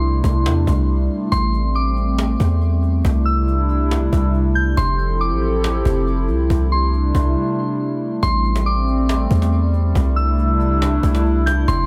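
Dreamy and floating, this short cut from a longer atmospheric cloud-rap track moves with a relaxed half-time feel in 4/4. A hollow, flute-like pad with a detuned shimmer sustains chords up front, cycling through C6, Am7 and Fmaj7 under a light reverb. High above it, a soft, pure FM synth bell carries the melody with a warbling, vintage tone colored by chorus, phaser, a low-pass filter and tape echo. A deep, boomy 808-style bass sits prominently beneath, its mellow sine tone striking quickly and then decaying. A snappy acoustic cajon with snares, compressed and saturated, enters at 0.2 seconds and stays low in the mix, with a break from 7.4 seconds leading into a new section at 8.2 seconds.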